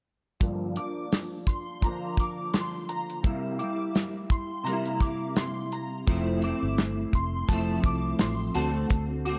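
A clean electric guitar and a damped 70s drum kit open together at 0.4 seconds in this hazy, lonely excerpt of indie bedroom pop in G dorian, moving at an unhurried 85 BPM in 4/4 with a light swing on the sixteenths. The picked guitar sits up front, softened by ensemble chorus, a warbly pitch drift and a low-pass filter that sweeps across the whole passage. The drums are dry and close, with a tight kick, a medium-tuned snare and hi-hat. From 0.8 seconds a shimmering FM bell adds a high second line, detuned and dreamy, its fast attack decaying into a long release and wrapped in lush chorus and slapback echo. After the harmony has moved from Gm7 to C7, a vintage muted fingered bass arrives at 6.1 seconds, round and punchy with a foam-muted, amped tone, as the chords shift to Fmaj7 and then D7. A moderate plate reverb and a small room give the dark production its soft, enclosed glow.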